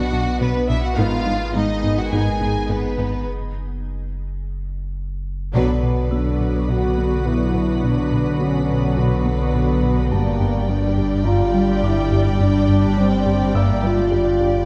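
The recording sounds dark and warm, set in a moderate scoring-stage reverb that gives this futuristic, vast hybrid orchestral and electronic film cue its sense of space. At 105 BPM in a straight 4/4, bowed strings carry the top: violins with light vibrato sing the melody over a lush second violin line, while very quiet violas add expressive portamento and a hushed bed of cellos and woody double basses anchors the low end. A mellow, distant French horn section and a bright, very quiet trombone section hold sustained chords beside a calm, nasal organ-like drone washed in chorus and its own reverb. Electronic layers run throughout: a deep, saturated sub bass, a rubbery, hollow square-wave bass riff with a moving notch sitting in the background, a soft, ringing harp-like synth pluck spinning arpeggios, and a very quiet vintage baby grand piano adding texture. The harmony moves from B minor to G-sharp minor before a break at 3.3 s, then a band accent at 5.6 s settles the piece into B minor, with a shift to G minor at 10.1 s as this cut from a longer piece plays out.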